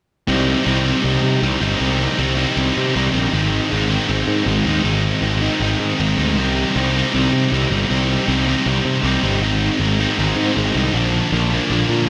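A distorted, double-tracked electric guitar sits up front, bright and compressed, playing a picked riff through an angry, raw punk passage in C minor at 158 BPM, cut from a longer piece. Beneath it, a fuzzy picked electric bass growls with overdriven grit, both parts running from 0.3 seconds to the end as the chords move from Cm to Ab and close on Bb. A lush hall reverb lends the whole a big arena sound.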